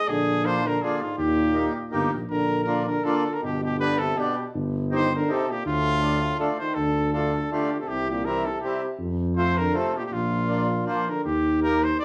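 This is a bouncy, festive piece of alpine folk from an alpine dance band, a short clip from a longer performance, moving at a brisk 161 BPM in 3/4 with a light swing on the eighth notes and set in B-flat major. A clear trumpet carries the melody up front, its soft attack and light vibrato giving it a classical polish. Beneath it, a punchy, roomy euphonium plays a second line with similar classical vibrato, sounding more distant, and drops out at about 11.3 seconds. A warm tuba anchors the bass in the same classical manner, while a reedy, dark accordion with dry tuning enters at 0.4 seconds to fill in a full, smooth accompaniment. After a brief opening, a new passage begins at 2.3 seconds and moves through chords such as Bb, G, Cm/G, Dm, C and F, all heard as a band playing live together in one large studio with a moderate reverb.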